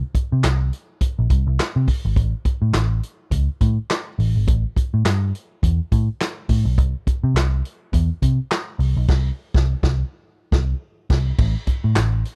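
Funk at 104 BPM in 4/4, this strutting, energetic excerpt rides a swung sixteenth-note feel and runs just over twelve seconds as a single section cut from a longer piece. A vintage muted electric bass, picked and foam-damped, carries the low end from G#1 to C3 with a dark, round, amped tone that sits up front. A vintage acoustic drum kit plays alongside it throughout, using kick, snare, hi-hat, crash cymbal and handclaps. The kit has a tight kick, a medium-tuned snare and a rolled-off top that gives it a natural, studio-room character close to the listener. The band hits an accent together from 9.1 to 11.4 seconds. The sound is dry and close, in the manner of a 1970s studio recording with little reverb.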